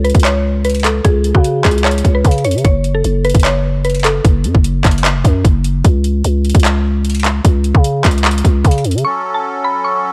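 The recording has a dark, warm digital ambience, with the drums and bass pressed up front in a short trap cut from a longer hip hop piece. The mood is dark and melancholic, moving at a half-time feel. A growling, buzzy 808-style bass carries the low end beneath an overdriven, electronic trap kit of hard-clipped kick, metallic hi-hats and handclaps. A woody, round mallet-like synth pluck, mellow and softened by chorus and a low-pass filter, sings the melody over the opening until 4.2 seconds. At 9.0 seconds the drums and bass stop, and a reedy, sweet accordion, close-miked and dry with a light tremolo tuning, holds a sustained minor chord as the pluck returns for the brief closing phrase.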